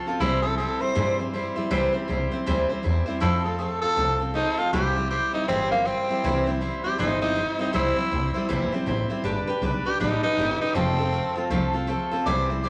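Rockabilly at 159 BPM in 4/4 with a swung eighth-note feel, this retro, rollicking excerpt sits in C major and is cut from a longer piece. A raspy tenor saxophone carries the melody as an up-front solo from 0.2 seconds, its gritty, pop-style tone ringing out with vibrato. Underneath, a picked steel-string dreadnought acoustic guitar supplies bright, full-bodied accompaniment, also placed up front and sounding from the very start. An upright bass, plucked pizzicato, adds a woody, dark low end from 0.1 seconds. The harmony moves through C, F, back to C, then G and F, and the whole ensemble sits in a wet, large studio reverb that lends the performance a roomy, vintage glow.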